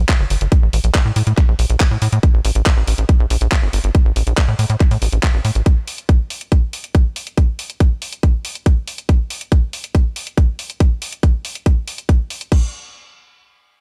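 A dry sound frames this intense, hypnotic psychedelic trance excerpt at 140 BPM in 4/4, led by a punchy, saturated sequencer bass with a sawtooth edge, a plucky filter and a moving notch that drives up front until it drops out at 5.6 s. A tight, layered electronic kick sits just as forward and pounds on to 12.6 s, while a garage drum kit adds crash cymbal, handclaps and bright hi-hats lower in the mix.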